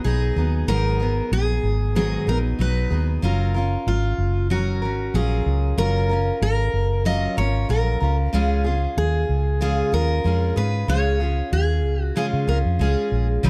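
A round, punchy, foam-muted electric bass sits up front in this heartfelt, sunny acoustic pop fragment at 94 BPM in 4/4, with a light 16th-note swing. Two full-bodied, picked dreadnought acoustic guitars share the spotlight, one carrying the melody in a compact upper range while the other picks out accompaniment over a G#m7, F#maj7 and C# progression. A small room ambience lends the dark bass and warm strings an intimate, close-up feel across its roughly 13.5 seconds.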